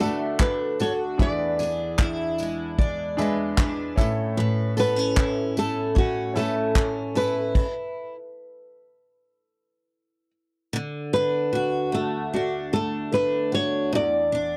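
A straight 4/4 groove from an up-front country drum kit with punchy kick, handclaps, tambourine and crash cymbal carries this carefree, heartfelt acoustic pop fragment, where a fingerpicked flamenco guitar with fresh strings and audible finger squeak sings the melody over a double-tracked, picked concert steel-string guitar, a full-bodied jumbo steel-string picking arpeggios and a clear, long-sustaining grand piano, until the drums, piano and arpeggios drop away around 7.6 seconds and the two remaining guitars carry on in a dry, close 1970s-style studio sound to the cut at 14.6 seconds.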